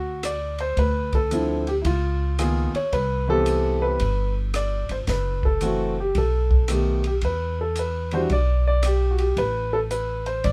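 Jazz piano trio at 112 BPM in 4/4, swinging its eighth notes with a relaxed, easygoing mood, in a short clip cut from a longer piece. A concert grand piano carries the melody from the start, its tone natural and up front with a deep low end, ranging from D3 to D5. Pizzicato upright bass with gut strings sits close and thumpy, giving a woody, dark foundation from F#1 to E2. A compact cocktail drum kit joins at 0.2 seconds, dry and acoustic, with dark ride and hi-hat, a high-tuned snare, rim clicks and a punchy kick sitting lower in the mix. The harmony moves from a rootless Gmaj7 through C#13, Cmaj7, F#m7b5, Baug7 and Em7 before settling on Asus2 at 9.4 seconds, all set in light reverb.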